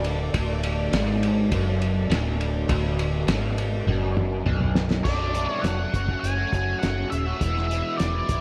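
Psychedelic rock with a mysterious, hypnotic pull, cut from a longer piece, where a biting, double-tracked overdriven guitar riff through rotary speaker and analog delay rides over a round, foam-muted fingered bass and a muffled, cloth-damped drum kit with a fat snare and a fill from 3.9 to 5.1 seconds, while dark bowed strings and a reedy, breathing harmonium drone sit in the background until about 5 seconds, when an octave-fuzz lead guitar takes up the melody in an echo-heavy mix with light reverb.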